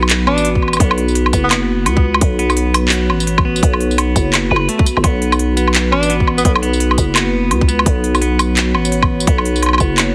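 A breathy alto saxophone with light vibrato and tape echo slips in brief phrases at 0.3 and 5.9 seconds over a dark, cinematic half-time drum and bass groove at 170 BPM, swung 16ths, with a growling, saturated 808-style bass, a tight electronic kick up front from 0.6 seconds, a crisp produced kit of hi-hat, handclaps, tambourine and woodblock, twangy clean electric guitar arpeggios through digital delay, and a deep detuned analog pad holding a Bsus2 chord with chorus and sidechain pumping in the background, all in a cut from a longer piece with a heavily compressed, radio-like sound and light reverb.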